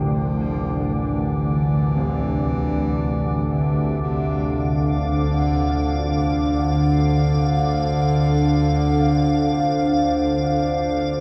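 Vast and ominous, this dark ambient drone moves at a slow 58 BPM in 4/4 over a D minor chord, and it is cut from a longer piece. An organ-like drone sits up front from the start, calm and detuned with a slow attack and long release, thickened by ensemble chorus and its own reverb. A warm bass clarinet carries the melody in a classical solo style, fading in across the full 11.2 seconds with delay trailing its notes, while old church bells ring arpeggios in the background until 8.2 seconds, their bronze, clangorous tones beating and struck by a worn iron clapper. At 4.0 seconds a deep, moody analog pad enters with sustained chords under lush chorus, and at 4.7 seconds an icy, crystalline glass pad adds a high, airy texture. The whole is bathed in a huge, wet reverb with a dark production.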